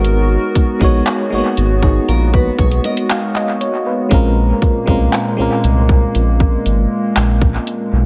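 Moody and longing, this slow contemporary R&B piece is cut from a longer track and moves from Abm9 to Bbm9 over an echo-heavy mix with light reverb and digital ambience. An FM electric piano with tremolo and a noise layer sits up front with dub echo, while a hollow, flute-like pad holds mellow, detuned chords under chorus and sidechain pumping. A deep, round analog bass and a trap kit with a hard-clipped kick, bright hats and handclaps drive the groove, and a full-bodied, fingerpicked nylon-string guitar adds echoing arpeggios from 1.8 to 4.1 seconds.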